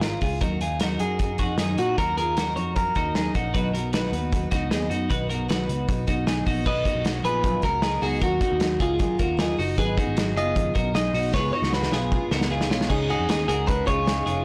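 A bright, twangy twelve-string electric guitar rings out arpeggios from the first moment of this nostalgic, breezy stretch of jangly indie pop, cut from a longer piece and moving at 154 BPM in a straight 4/4. Beneath it, a vintage muted picked electric bass sits dark and round with tube saturation, while a loose indie drum kit with a tight kick and medium-tuned snare stays up front in a pumping small room, working crash, hi-hat, kick and snare. A picked steel-string acoustic guitar joins in the background at 0.4 seconds, full-bodied with audible finger squeak, as the chords move from D#m7 through B, Bmaj7, D#m, G#m7 and C#7. A clean, picked electric guitar carries the melody in a brief early phrase and then returns from 6.7 seconds, and a drum fill leads into a closing turn on C#sus2 where soft, mellow electric-piano-like synth keys with chorus slip in behind at 12.9 seconds. The whole recording has moderate studio ambience and a blown-out, overdriven character.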